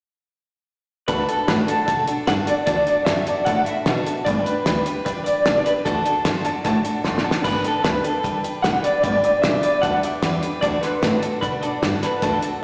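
A twangy, slightly broken-up electric guitar from a small old amp carries the melody up front with tremolo, slapback echo and analog delay in this rowdy, upbeat rockabilly excerpt in D major at 151 BPM, backed by a jangly, detuned honky-tonk upright piano, a bright picked steel-string acoustic guitar, a woody, thumpy pizzicato upright bass and a cloth-damped, thuddy drum kit with a fat snare and dark cymbals that plays a fill at 7.0 seconds, all heard as a live gig through a venue's PA with recital hall reverb and a small speaker sound.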